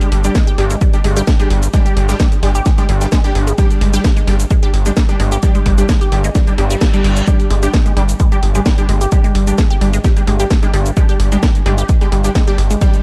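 A punchy, dry electronic kick drum sits up front from 0.4 seconds, driving this dark peak-time techno excerpt in a straight 4/4 pulse alongside a gritty, saturated synth bass that holds a low G with aggressive, wave-folded bite and sidechain pumping. Above them, a squelchy resonant blip pluck repeats a riff through phaser and dub echo, its sawtooth body carrying a moving notch and a noise layer. A thick rave stab punctuates the groove with detuned unison stabs, bright and evolving, dressed in chorus, built-in reverb and dub echo, and it pumps against the kick as well. The techno drum kit adds a cracking snare, warm hats and shaker, layered and re-recorded in a large room, with sidechain pumping on the hats and percussion. A reverse cymbal rises faintly in the background between 6.6 and 7.3 seconds, while the overall production stays dark and largely dry, giving the fragment a relentless, driving feel.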